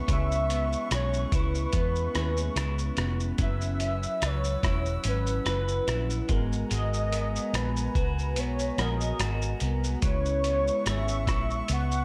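A twangy, slightly broken-up electric guitar through a small old amp with subtle chorus and warbly pitch drift, mellow detuned synth keys under chorus and phaser, and a woodwind section holding chords in the background open this wistful, lonely indie and bedroom pop fragment at 72 BPM with a light 16th-note swing in C# dorian; at 0.1 s they are joined by a velvety, softly attacked synth lead carrying the melody through lush chorus and digital delay, a dark, foam-muted fingered bass, and a muffled, pitched-down sampler-style drum kit of thumpy kick, hi-hat, rim click and shaker, set in light reverb as C#m7 moves through F#7sus4 and G#m9 back to C#m7.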